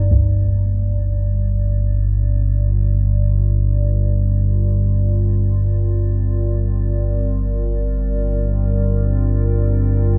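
A cathedral-sized wash of reverb and cassette-tape haze surrounds this desolate, unsettling ambient excerpt in G minor and free time, where a deep, ominous, wave-folded drone rumbles up front from 0.0 to 10.2 seconds beneath a quieter, moody analog pad of detuned square and sawtooth tones that holds a G minor chord through chorus and phaser.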